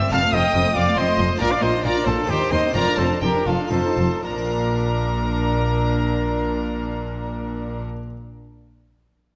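A mellow, soft-edged solo trumpet opens this lively, brilliant fragment of a baroque-style concerto movement in Bb major and 3/4, sharing the melody with a rich, gut-strung violin section above it while a dark, nasal viola section and a bright Flemish-style harpsichord set in the background fill in the accompaniment. A close second violin section, a cello section and an up-front double bass section join almost at once, the period-style strings all bowed, with light vibrato from the violins, violas and double basses. The tempo, somewhere between 113 and 141 BPM, slows from 0.8 to 4.2 seconds across a recital-hall reverb, and the harpsichord rings on alone to 8.2 seconds.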